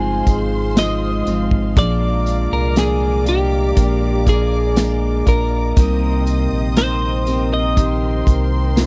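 Longing and emotional, this slow pop ballad at 60 BPM in 4/4 is carried by a bright, compressed twelve-string electric guitar melody with tremolo. A dark, lush violin section adds an expressive bowed second line with vibrato and portamento, while a mellow tine electric piano, a smooth detuned analog pad with chorus, and a picked dreadnought acoustic guitar playing arpeggios fill out the harmony over Fm7, Bb7 and Cm7. A deep sine sub bass sits up front from the start, and a punchy acoustic drum kit enters up front at 0.3 seconds, joined by a very quiet, jingly tambourine, all in a dry, close 1970s-style studio sound.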